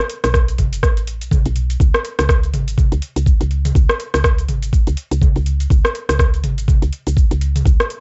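A swung afro house groove at 123 BPM in 4/4 drives this hypnotic, earthy excerpt, built on a knocking electronic kick up front, an afro-pop drum kit of metallic hats, rim clicks, shaker and toms, and a woody, round FM bass with a fast attack that pumps with sidechain compression between F#1 and C#2, with both drum parts carrying a cassette-tape grit and the whole sounding dry, close and dark-edged like a home tape recording.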